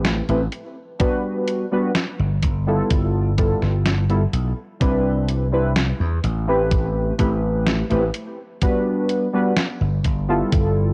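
Vaporwave at a slow 63 BPM in G major, faded and nostalgic, with mellow, warbling lo-fi synth keys drifting through analog chorus and delay over Am9, Gmaj7, G13 and Cmaj9 chords, a bright, punchy slap bass with tube saturation up front, a detuned 8-bit drum machine's gritty hi-hat and snare, and a thumpy electronic kick entering at 1.0 seconds, all carrying the gritty warmth of a cassette-tape recording in an excerpt cut from a longer piece.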